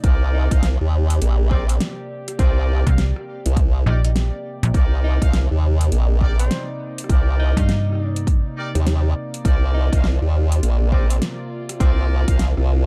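Glitch hop at 102 BPM in C minor, playful and gritty, with a 16th-note swing over a single Cm9 chord in this short cut from a longer piece. A punchy, overdriven electronic kick sits up front alongside a layered pop kit with a fat snare, metallic hats and rim clicks, while a formant-filtered wobble bass drives the low end and a snappy, metallic FM bass joins from 2.9 to 8.4 seconds. A distant, roomy horn section adds bright stabs with delay, and in the background a nostalgic, lo-fi tape-like pad warbles through chorus and phaser with sidechain pumping while a breathy tenor saxophone plays a subtoned melody with scooped notes, all within a dark, dry production.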